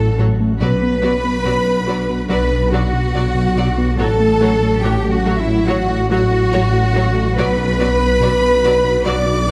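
Bowed strings fill this short excerpt from a longer cinematic score, with a rich symphonic cello section playing the low line in an even, smooth, close tone alongside a clear double bass section and a deep, thick saturated sub bass. The hybrid orchestral and electronic setting moves at 71 BPM in a straight 4/4 in B minor, shifting between F#m/A and Bm chords with a futuristic, tense mood. A smooth, mellow synth bass carries a sawtooth-and-triangle riff, while a French horn section in the background holds sustained chords in a tight classical style with light vibrato. Above them, a chamber violin section plays a focused second line, a symphonic viola section adds an intense, lush accompaniment, and a bright symphonic violin section sits in the background with a melody that enters at 0.2 seconds. A very quiet, organ-like additive pad fills in pure, calm sustained chords with detuned unison, ensemble chorus and a moving notch. 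The dark production is bathed in a wet scoring stage reverb.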